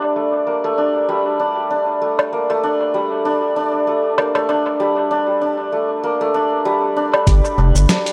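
A shimmering santur opens this organic downtempo excerpt, its bright, hammered arpeggios ringing up front between G3 and D4, shaded by a low-pass filter and tape echo. The mood is mystical and earthy, set in G minor at 97 BPM in 4/4 with a 56% swing on the sixteenths, and the instruments are tuned to A4 = 441 Hz. A gritty, sampler-style soul drum kit enters at 2.2 seconds, bringing hi-hat, shaker, a medium-tuned snare and woodblock, compressed and tape-warm, with analog delay on the kit. The harmony rests on G minor until 7.3 seconds, when it shifts to G7(no3). At that point a round, deep analog bass arrives between F1 and G1, mellow and sustained with sidechain pumping, alongside a soft, overdriven electronic kick set in the background. A moderate plate reverb and an echo-heavy mix give the piece a spacious, hazy finish.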